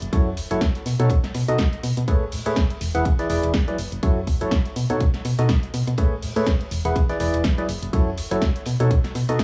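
A lo-fi home cassette recording with light reverb and small-room ambience carries this joyful, feel-good piano house excerpt, cut from a longer piece and set to a swung groove. A punchy, tape-warm electronic kick sits up front beside a hollow, chorused organ stab riff with tape echo and sidechain pumping, cycling through jazzy seventh and ninth chords. Underneath, a round, dark FM bass pumps along, an overdriven analog drum machine adds a punchy snare and hi-hat, and a muffled, cloth-damped acoustic kit with a fat snare and dark cymbals thuds gritty in the background.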